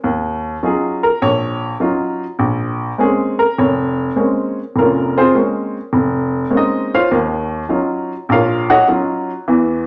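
A wet, large-studio reverb surrounds a woody, up-front upright piano with a warm tone, playing alone through this cool, smoky jazz fragment cut from a longer piece. At 102 BPM in 4/4 with a swung eighth-note feel, the piano spans from deep in the bass to high in the treble, moving from Ebm9 to Bbm9 at 2.4 seconds and back to Ebm9 at 7.1 seconds before the clip ends at 9.9 seconds.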